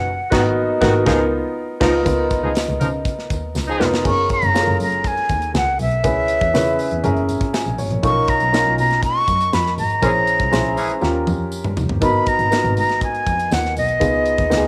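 Set in a straight 4/4 at 120 BPM, this upbeat, urban slice of polished 1980s jazz-funk pop in F# major is cut from a longer piece and carries the soft grain of a home cassette recording. A baby grand piano, present and up front, plays accompaniment throughout with a subtle chorus, adding fills around 7.3 seconds and at the very end. From 0.3 seconds an acoustic studio drum kit with a punchy kick and medium-tuned snare drives the groove alongside a bowed double bass of reedy, gut-string character that sits distant in the mix. A clear, vintage-sounding horn section carries a second line through the opening band accents and returns briefly around 10.0 seconds, while a jingly, compressed tambourine ticks along in the background. The breathy, close-miked concert flute takes the melody with a straight tone and soft attack from 4.1 seconds, floating over rich chords such as Bmaj9#11 and A#m7b5. 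Drum fills and band accents punctuate the phrases, all bathed in a moderate spring reverb.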